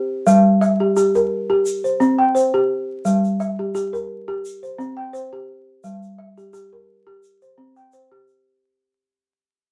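West African traditional music at 86 BPM in 4/4 with a light swing, flowing and reflective, as balafon arpeggios spanning G3 to G5 turn over a Gm and C5 alternation. The balafon sits up front with a woody, round, dark tone struck with soft rubber mallets, while a grainy, bright egg shaker enters at 0.3 seconds, close and dry beneath it. Moderate studio ambience and vinyl crackle surround this short cut from a longer piece, which fades out across its full length of roughly 8.6 seconds.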